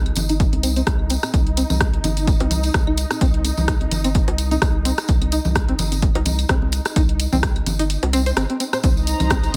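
Set in a digital ambience, this sparse, quirky minimal techno excerpt in C minor runs at 128 BPM with a light 16th-note swing, built on a deep, saturated sub bass that pumps against a dry, punchy electronic kick up front, along with an analog drum machine's hi-hat and rim click, delayed claves, congas and bongos, and a jingly, close tambourine. A twangy, bright, string-like resonator pluck carries the riff through chorus and dub echo under a filter sweep, while a swarming, detuned drone hovers on Eb4 in its own reverb. The kick drops out at 7.9 seconds, and at 8.8 seconds a dark, woody studio string section enters, bowed and lush, as the harmony moves from Cm to Cm7.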